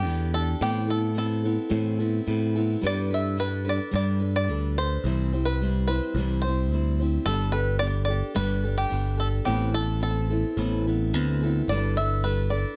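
A twangy, percussive bluegrass banjo carries the melody over a bright, fresh-stringed picked steel-string acoustic guitar and a growly, up-front picked electric bass in this warm, jangly folk rock and heartland rock excerpt at 108 BPM in G major, moving through Gadd9, Amadd9 and C chords with slapback echo and plate reverb on the banjo, plate reverb on the guitar, and a dark production under light reverb.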